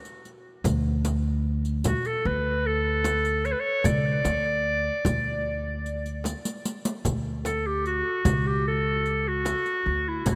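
This Turkish makam ensemble piece, cut from a longer work, carries a passionate yet stately mood in a straight, unhurried four-beat pulse. A very quiet metal-shell darbuka and a riq with dark jingles open at 0.1 seconds, both played with soft hands and captured close and dry. They are soon joined by a deep, large frame drum struck with hard hands and an up-front upright bass, plucked on gut strings with a woody, thumpy tone. At 1.9 seconds a bright, vintage-toned clarinet enters as the solo voice in a classical style, sitting up front with a touch of delay. A drum fill leads into a new section, and the whole mix is soaked in a lush hall reverb that lends it a dreamy glow.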